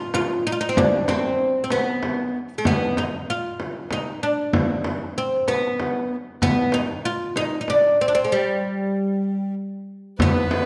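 Persian modal ensemble music in a stately 6/8 at 64 beats per minute, cut from a longer piece, with a plucked, fretless oud carrying the melody up front in a woody, double-stringed voice over a deep, large frame drum that sounds distant. Everything drops out from 8.3 to 10.2 seconds, and at 10.2 seconds a dark, bowed violin with vibrato and a smooth top enters on a second line alongside a warm tombak in the background. A moderate recital hall reverb gives the whole ensemble a warm, roomy glow.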